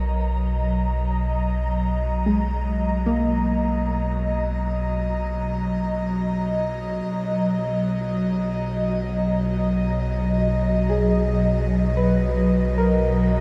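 Serene and weightless, this ambient passage floats in free time around B major, resting on a single Bmaj7 chord for its full 13.4 seconds as part of a longer piece. An airy, breathy pad sits up front with sustained chords spanning B2 to A#5, its slow attack and long release softened by chorus and shimmer reverb, while the whole pad fades in across the passage. Beneath and around it, a soft, round pluck traces arpeggios between G#3 and C#5, its dark, decaying tone blurred by lush chorus, diffuse ambient delay and shimmer. A deep sub bass holds a low B1, giving the music a mellow, grounded floor. All three parts play throughout, bathed in a cathedral-like reverb with a 6.1-second tail that places them in a vast, echoing space.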